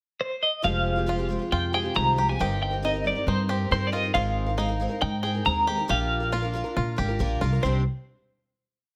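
A straight 4/4 pulse at 138 BPM drives this short, complete indie folk piece in C minor, bittersweet and wistful, with an arrangement that builds from a brief pickup bar into a pre-chorus and lands on a final chord. A bright, twangy twelve-string electric guitar carries the motif-based melody in period phrases from 0.2 seconds, clean and compressed, up front and colored by tremolo. Beneath it, a woody, growly upright bass played pizzicato holds simple root-and-fifth lines, while a shimmering, octave-doubled picked twelve-string acoustic guitar strums sixteenths in open chord shapes. A fingerpicked steel-string acoustic guitar sits in the background with an alternating-thumb pattern and finger squeak until 4.2 seconds, and a percussive bluegrass banjo joins at 1.1 seconds with a fingerpicked arpeggio ostinato. Light reverb surrounds the ensemble as the harmony moves through Fmadd9, Cm7/G, Abadd9 and Bb before resolving to C minor.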